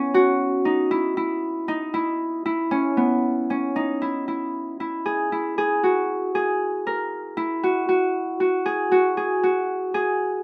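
A solo Celtic harp opens this short contemporary instrumental excerpt, with a high F#5 sounding at 0.1 seconds. The mood is hopeful and playful, set in E lydian and moving in a straight 7/8 metre at 233 BPM counted in eighths. The harp's acoustic, mellow tone is fingerpicked and ringing, sitting up front in the mix and ranging from B3 to A#4. At 3.8 seconds the music moves into a new section, arriving on an Eadd9 chord, and this section runs until the harp stops at 10.4 seconds. Close, detailed microphones capture the instrument with light reverb, and the passage is cut from a longer piece.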